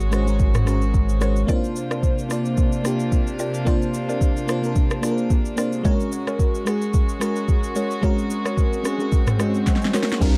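Amapiano with a deep, soulful mood, built on a lush, dreamy FM electric piano with a soft pad layer and chorus up front, floating over distant, bowed chamber strings holding sustained chords as Ab9sus4 and C9sus4 alternate. A thick, saturated sub bass sounds only until 1.4 seconds, while a smooth R&B drum kit with a soft kick, fat snare, rim click, shaker, toms and crash plays throughout, and a woody, round mallet-like synth pluck with chorus, phaser and digital delay sits in the background with stabs. Near the end, piano and drum fills arrive, an electronic swell and downlifter comes in at 8.7 seconds, and a hollow, bouncy log drum bass enters at 10.2 seconds, all within a dark production with light reverb.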